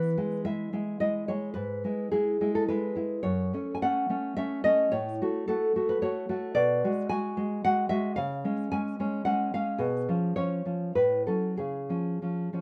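Nostalgic and warm, this brief passage cut from a longer romantic piece for solo classical guitar moves in 3/4 with a rubato feel, its tempo drifting between 93 and 113 BPM, and the tuning sits slightly high at A4 = 441 Hz. A single nylon-string guitar carries everything for the full 12.6 seconds, spanning from F#2 up to G#5. Its tone is dark and woody, with the full-bodied, deep classical character of old strings and a thumb-plucked touch, placed up front in the mix. Light reverb gives the guitar a gentle sense of space. The harmony opens on E and moves through E/G# and F#m, passes a G#m7b5/B, reaches C# at 8.2 seconds, and closes by returning to C# at 11.6 seconds after a brief C#7/B and F#m/A.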